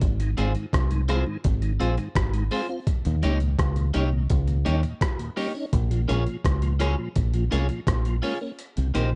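Dry and cassette-dulled, this sunny, laid-back roots reggae excerpt in Ab major at 84 BPM rides on a dark, round fingered dub bass up front and a gritty, compressed, pitched-down sampler-style drum kit with a thumpy overdriven kick, hi-hat and rim click, while a piping tonewheel organ with key click, chorus vibrato and slow rotary speaker and a bright, twangy, slightly broken-up picked electric guitar with subtle chorus fill out the Ab6, Eb7, Bbm7 and Cm7 changes until the kick drops out at 8.6 seconds.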